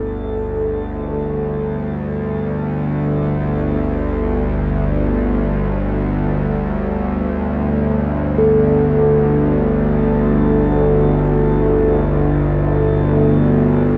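Dark ambient drone in free time, this cut from a longer piece feels unsettling and cavernous, suspended over a single Gsus2 harmony. A bowed-like drone sits up front from 0.0 to 14.0 seconds, low in the register between G1 and D2, its string-like, sawtooth-edged tone tense and wave-folded, with a noise layer, a slow attack, long release, vibrato and its own built-in reverb. The drone fades in across the full 14.0 seconds, rising out of the dark rather than arriving. Behind it, a bronze singing bowl rings on A4 in the background, metallic and meditative, with slow beating in its tone and a full, close-miked body struck with a suede striker, set in shimmer reverb. The whole space is soaked in a huge ambient reverb with an 8.3-second decay, so the sound hangs in a vast, echoing chamber.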